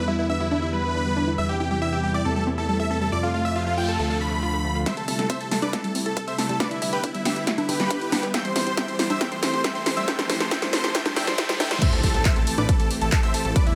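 A huge, bright supersaw lead carries the euphoric, emotional melody of this 138 BPM uplifting trance excerpt in A minor, joined by a catchy plucky unison lead above it, background arpeggios from a detuned unison pluck, a thick chorused pad, a gritty sawtooth bass that drops out at 4.8 seconds and returns at 11.9, a very quiet noise sweep, riser and impact, and an overdriven electronic kick and punchy analog drum machine with congas, handclaps, snare, hi-hat, ride and crash that enter at 4.9 seconds for a build-up before the drop at 11.8. The synth parts pump with sidechain over a chord cycle that moves from Em7 through C/E, F and Dm to Am7.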